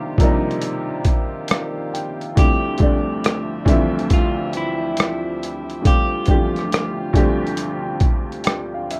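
Opening on a worn, woody upright piano and a bright, low-passed brass section held in the background, this nostalgic, melancholic lo-fi hip hop excerpt at 69 BPM with a swung feel adds a gritty, pitched-down boom bap kit with a thumpy kick, hi-hat and rim click up front at 0.2 seconds, while a dark, slightly broken-up electric guitar carries a short picked melody through tape echo from 2.4 to 7.0 seconds over Cm11 moving to Dm11, all in a rough home demo mix with light reverb.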